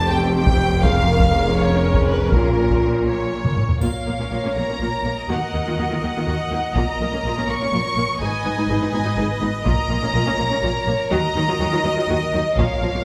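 Hard-stick taiko drums drive this dark, relentless cinematic orchestral cue in 6/8 at 82 BPM in Bb phrygian, where a lush symphonic violin section carries the melody over a clear, close chamber violin line, focused violas, and rich, vibrato-laden cellos and distant double basses, while a dark French horn section holds sustained chords until 3.4 s, a drum fill leads into the second section at 3.8 s, and a bright triangle glints in the background briefly, all set in a reverberant concert-hall space.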